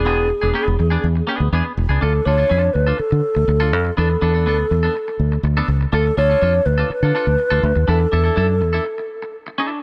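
A dark, softly reverberant small-room sound frames this joyful, danceable disco excerpt at 123 BPM in straight 4/4, cut from a longer piece. A mellow, hollow alto flute with gentle vibrato and a soft attack carries the melody over a bright, twangy clean electric guitar bathed in lush chorus, while a foam-muted fingered electric bass sits up front, direct and amped. The chords move from E7 through Dm and E7sus4, and a break arrives at 8.8 seconds as the bass drops out, leaving flute and guitar to finish.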